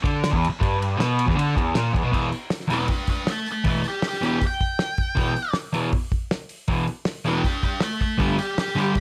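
At a straight 158 BPM in 4/4, a cloth-damped, thuddy acoustic drum kit drives this raw, menacing garage rock cut in E minor, its tight kick, fat snare and dark, rolled-off cymbals sitting dry and up front beside a crunchy, double-tracked overdriven guitar riff on E minor that moves to G at 8.2 seconds. From 2.7 seconds an octave-fuzz lead guitar carries the melody high above, its distortion trailing tape echo. Light reverb colours the short fragment.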